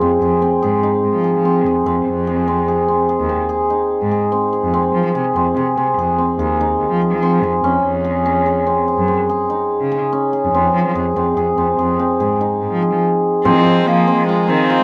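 A mellow, shimmering cimbalom sits up front, ringing out arpeggios over a rich, bowed cello bass with smooth vibrato in this hypnotic, pensive contemporary chamber piece in 7/4 at 145 BPM in F minor, cut from a longer work and heard with little reverb. The harmony moves from Fm7 to Absus4/F and back to Fm7. At about 13.4 seconds a pure, floating viola adds a second line while a reedy pedal harmonium breathes sustained chords in the background, joined by a distant frame drum and, from 13.9 seconds, a delicate, bell-like celesta.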